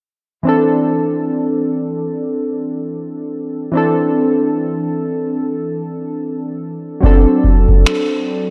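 Round, chorused analog keys carry this dreamy, smooth contemporary R&B fragment in C major at 73 BPM, their pulse and sawtooth tones evolving through a filter sweep as they hold a C69 chord from 0.5 seconds before moving to D7 at 7.0 seconds. At that same moment a booming analog drum machine joins briefly with dry finger snaps and a deep kick, sitting up front until 8.1 seconds over a gentle 16th-note swing. A lush hall reverb soaks the mix, giving this section cut from a longer piece a hazy, floating quality.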